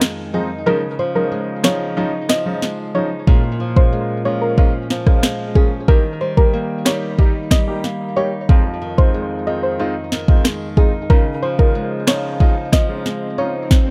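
An up-front afro-pop drum kit with a deep kick, sharp snare and rim clicks drives this sultry, bouncy dancehall excerpt at 92 BPM in a straight 4/4, while a fingerpicked flamenco guitar with audible finger squeaks spins tape-echoed arpeggios over Fm7, Dbadd9, Bbm7 and Eb. A soft, round, dark synth pluck carries the melody through chorus and tape echo, backed by a polished grand piano accompaniment. The dry, echo-heavy mix closes with a faint electronic swell in the background from 13.2 seconds.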